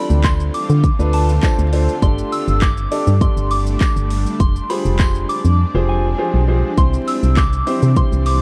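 A soft, mellow FM synth bell carries the melody over a baby grand piano with long sustain and a shimmering, ethereal ambient pad, the piano and pad pumping with sidechain, before a hollow, organ-like FM bass and a punchy, up-front house drum kit of kick, metallic hats, handclaps and shaker join at 0.1 seconds, with a jingly tambourine tucked in the background, in this upbeat, summery dance-pop excerpt at 101 BPM in C major that moves from Dm7 through Gsus2 and Fmadd9 to C, drops into a silent gap from 5.6 to 6.8 seconds, and carries a dark production with light reverb and vinyl crackle.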